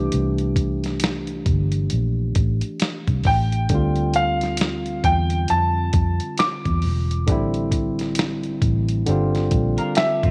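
A slow, swung groove at 67 BPM in 4/4 carries this soulful, introspective neo-soul and R&B excerpt, cut from a longer piece. The dusty, sampler-style drum kit sits up front with a thumpy kick, a medium-tuned snare and hi-hat, its compressed, gritty sound tape-tinged, while a vintage muted fingered electric bass lays down a dark, round, punchy low end underneath. A barky tine electric piano, lightly overdriven through a combo amp, fills in the harmony as the chords move from C69 to Dm11, Am7 and Gm7. At 3.3 seconds a baby grand piano enters up front with the high melody, touched by slapback echo. In the final moments, from 9.8 seconds, an electric guitar through a small old amp adds a quiet, slightly broken-up, lo-fi second line bathed in lush chorus, and light reverb gives the whole mix a gentle sense of space.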